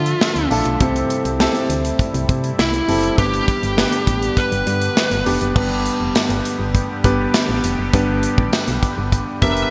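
A fuzzed, compressed electric lead guitar carries the melody over up-front concert grand piano, a bright detuned sawtooth pad with chorus in the background, a punchy, round FM bass and a drum kit with a punchy kick, gated reverb, bright cymbals and tambourine in this nostalgic, moody 1980s-style pop excerpt at 101 BPM, moving through Dmadd9, C6 and G in a lush hall, with the guitar dropping out at 5.2 seconds and returning briefly at 9.4 seconds.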